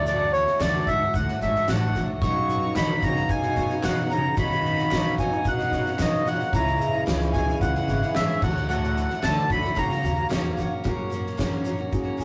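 A rough rehearsal-room recording with saturated tone and wet booth ambience carries this uplifting indie folk piece at 111 BPM, where a reedy, slowly beating accordion leads up front over a shimmering, octave-doubled twelve-string guitar, a bowed cello with vibrato and portamento, a breathing pedal harmonium, a woody pizzicato upright bass, a soft-mallet drum kit with boomy kick and fat snare, a grainy tube shaker and crisp group handclaps, as the chords move from D through Badd9 and C#m back to D and on to F#, before a full-bodied fingerpicked steel-string guitar enters at 10.9 s.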